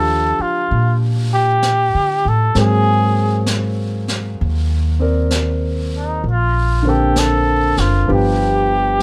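Late-night and tender, this slow swung jazz ballad at 65 BPM features a veiled cup-muted trumpet singing the melody up front with vibrato and scooped notes, over a vintage grand piano with smooth, long-sustained chords moving from Ebmaj9 through Ab9 and Bbmaj9 to G7, a woody pizzicato upright bass just as close, and a distant, roomy brushed drum kit with a high-tuned snare and rolled-off top entering at 0.7 seconds, all in a dry, intimate sound.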